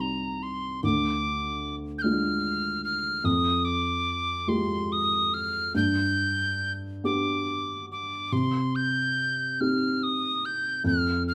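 Celtic slow air in a haunting, mournful vein, moving in a loose, rubato 6/8 as a short cut from a longer piece. A bright wooden whistle carries the melody high in its range with an airy, straight tone and a crisp, chiffy attack, while a felt-muted upright piano supplies soft, boxy, dark accompaniment, its action noise audible beneath the thick felt. Both instruments sit up front in a moderate studio reverb that gives the sense of two players sharing one room, the harmony passing from C minor through a diminished chord and an F minor add9 to G before settling back on C minor at 8.3 seconds.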